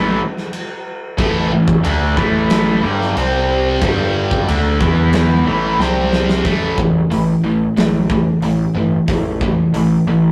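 Hard rock at 91 BPM in a straight 4/4, anthemic and energetic, cut from a longer piece and captured in a rough rehearsal room with tube saturation and moderate reverb. A cranked stack guitar with overdrive and phaser leads the riff up front, joined by a tight distorted guitar and underpinned by a fuzzy, punchy picked electric bass, all moving through power chords from A5 to C5, G5, D5 and E5. A big, dark acoustic kit with a punchy kick enters at 0.4 seconds and drives a fill from 5.8 seconds into a new section at 6.4 seconds, landing back on A5.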